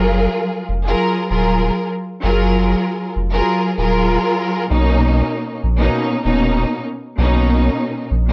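Boom-bap hip-hop at 97 BPM with a 55% swing on the 16ths, soulful and confident in B lydian, where a lush, up-front bowed string section with vibrato and portamento, tinted by cassette tape and filtered at both ends, moves from F#maj9 to Bmaj9 at 4.7 seconds over a deep, round sine sub bass, set in a light reverb across this 8.3-second cut from a longer piece.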